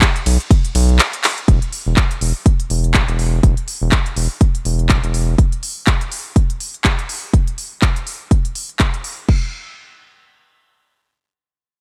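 Deep and hypnotic, this deep house excerpt swings its sixteenths as a punchy, up-front electronic kick and a crisp house kit of hi-hats, handclaps, ride and crash run throughout, while a round, wave-folded analog bass pumps with sidechain compression from 0.3 to 5.4 seconds in a dry room, with a break from 1.0 to 1.5 seconds and a drum fill at 1.2 seconds inside the opening drop.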